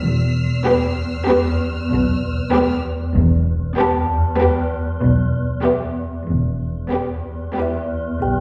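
Mysterious and ominous, this brief cut from a longer cinematic suspense score moves at 96 BPM in 5/4 on a single E minor chord, with a swarming, detuned, granular drone on E2 sitting up front over dark, woody double basses and rich, lush cellos holding the low end. Violin, second violin and viola sections fill in the upper harmony from 0.7 seconds, with a focused violin texture glinting high in the background until 2.8 seconds, while a very quiet taiko ensemble with heavy sticks thuds briefly from 3.2 seconds. From 3.8 seconds a delicate, slightly out-of-tune music box adds tinkling plucked notes, all heard from further back in a scoring stage reverb.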